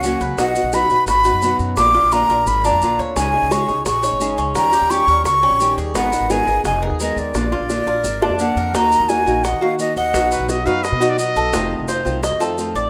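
Sultry and warm, this short cut from a longer Cuban son and guajira piece moves at 172 BPM in straight 4/4. A breathy, expressive jazz flute with vibrato carries the melody up front over fingerpicked nylon-string guitar, metallic double-string tres arpeggios, woody pizzicato upright bass, round low-tuned bongos with brief fills, and grainy, distant maracas, before a punchy trumpet slips in a short second line at 10.3 seconds, in a rough home demo mix with light small-room reverb.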